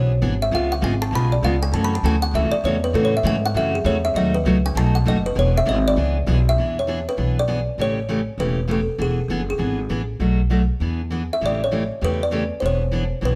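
Playful and swinging, this short cut from a longer acoustic string swing piece bounces along in the gypsy-jazz manner. A kalimba carries the melody with a mellow, hollow-box fingertip pluck, its soft, short notes given a slapback echo and a plate reverb, and it takes a solo turn over the first 6.6 seconds. Beneath it, a picked steel-string acoustic guitar supplies bright, fresh-stringed accompaniment with a full dreadnought body. A pizzicato upright bass with gut strings anchors the low end, woody, dark and thumpy, and sits slightly louder than the other two. All three parts are up front in a moderate studio room. Across both sections the harmony moves through dominant-seventh changes such as E7, A7 and B7, with minor-seventh colours like F#m7 and Bm7, and the second section begins at 6.6 seconds.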